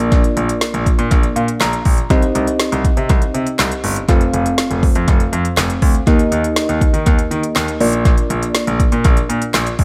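A light reverb and echo-heavy mix frames this upbeat, wistful synth-pop excerpt at 121 BPM in 4/4, where a deep house drum kit with a deep kick, woody snare, smooth hi-hat and handclaps sits up front with tape echo, a clear concert grand piano carries the bass line with audible action noise and long sustain, and muted, felt-like synth keys with chorus add dark, soft accompaniment and a fill at 1.1 seconds over chords moving from Bb through Cm, F and Eb back to Bb.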